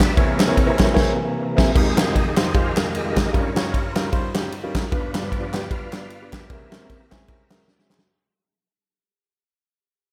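A swung 4/4 groove at 152 BPM drives this soulful, fervent uptempo gospel excerpt in F minor, cut from a longer piece. An overdriven tonewheel organ takes the solo and holds thick, gritty sustained chords, its key click and chorus vibrato turning through a slow rotary speaker. Beneath it, a clear grand piano supplies accompaniment with a slapback echo, while a punchy, up-front country drum kit works kick, medium-tuned snare, ride and crash, and group handclaps sound hollow and distant in the background. The band hits an accent from 1.0 to 1.8 seconds, then the music fades out over chords moving from Fm11 through Eb9/G and G7 to C7b9b13, closing on a drum fill at 7.7 seconds. A lush hall reverb with small room ambience gives the whole a big arena sound.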